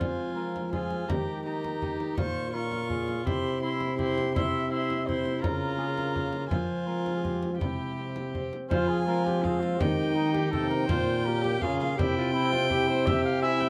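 Classical, renaissance-style consort dance in 3/4 at 166 BPM in F harmonic minor, courtly yet rustic, in which a dark, distant cornet with vibrato carries the melody beneath a rich, gut-string violin second line, while a reedy period-style viola and a ringing, fingerpicked concert harp in the background fill the accompaniment, a mellow, up-front trombone holds the bass and a deep frame drum struck with hard hands keeps the dance going, all captured with close, detailed microphones and light reverb in this short excerpt from a longer piece.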